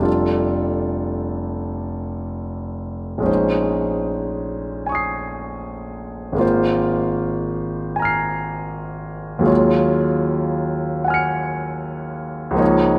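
A concert grand piano plays alone and sits up front, intimate and polished, with deep bass, long sustain and the mechanical noise of its action clearly audible across its span from F1 to C#7. This hazy, nocturnal impressionist classical piece moves at a rubato 77 BPM in 4/4, drifting through F69, Bbm11, Ab69 and D#m11 chords. A wet scoring-stage reverb with a 1.8-second tail surrounds this 13-second portion of a longer work.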